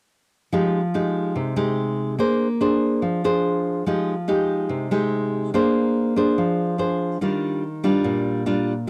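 A bright, fingerpicked nylon-string guitar sits up front and carries this short bossa nova passage entirely on its own, from 0.5 seconds to its close at 8.9 seconds. The mood is breezy and sunny, with a straight feel in common time. The acoustic, classical-style guitar spans a range from Bb2 up to C5, moving between Fm9 and Bb9 chords in the opening section before settling onto an Ebmaj9 when a new section begins at 7.2 seconds. The sound is dry and close, like a 1970s studio recording, with just a touch of small-room ambience around the instrument. Cut from a longer piece, the clip feels like a relaxed, intimate glimpse of a solo guitar performance.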